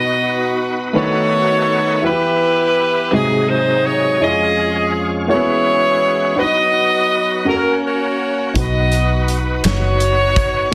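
A bright, up-front saxophone section carries the melody in this soulful, jubilant slow gospel excerpt in B major, set in 6/8 at 55 BPM, over a natural-sounding baby grand piano with short sustain and a full, shouting tonewheel organ holding sustained chords through a slow rotary speaker, light overdrive, chorus vibrato and audible key click. At 8.6 seconds a punchy, foam-muted fingered electric bass and an acoustic soul drum kit with a fat snare, tight kick and rolled-off top join in as the progression returns home to B, and a crisp, dry group handclap sits in the background at 9.6 seconds. The sound is dense and heavily limited, set in a moderate large studio reverb with a touch of small-room ambience.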